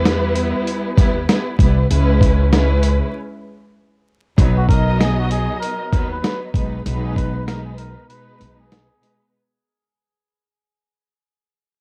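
A swung boom-bap groove at 97 BPM rides on a gritty, compressed sampler-style kit with a thumpy kick and medium-tuned snare, under a woody, growly pizzicato upright bass and a bowed string ensemble full of vibrato and portamento, its tape-softened tone moving from Em to C#m7 before a break at 3.1 seconds. At 4.6 seconds a veiled, cup-muted trumpet slips in with a soft, jazzy solo line, treated with a cassette-tape effect and tape echo over B and G#m/B as the piece fades out. The dry home-cassette sound, laced with vinyl crackle, gives this confident fragment a nostalgic glow.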